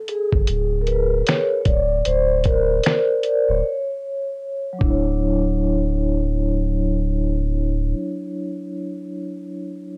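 A laid-back 4/4 groove at 76 BPM, swung at 62% on the sixteenths, sets a dreamy, nostalgic lo-fi hip hop mood in D major, tuned slightly flat to A4 = 437 Hz. The sampler-style drum kit sits up front, compressed, pitched down and muffled, with a thumpy kick, a fat snare, hi-hat and finger snaps, and it stops at 5.0 seconds. Beneath it, a deep, round sine sub bass with a fast attack and sustained notes anchors the low end. The soft-mallet vibraphone carries a featured solo through the opening, its metallic, ringing tone mellowed by a slow motor vibrato, a boxy small-room sound, cassette tape coloring and a low-pass filter. The harmony moves from Bbadd9/D into a break at 3.6 seconds, then settles on Dmaj9 at 4.8 seconds, just before a second section begins at 5.2 seconds. The whole piece, cut from a longer work, has a dry, gritty hardware character with little reverb.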